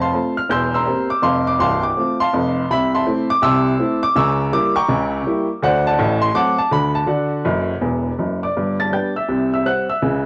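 A home cassette recording with a moderate spring reverb and a small room ambience frames a clear, woody upright piano that sits up front in the sound. This short cut from a longer piece is playful, swinging stride jazz at 164 BPM in 4/4, with a 64% swing on the eighth notes and the piano tuned to A4 = 439 Hz. The solo piano covers a broad span from deep bass notes to bright upper tones, moving through F, C7/E, Am/C, a C#dim7 and D7 before settling on D. A polished piano fill arrives at 7.5 s and leads into a new passage at 8.5 s, which moves from G to C until the cut ends at 10.3 s.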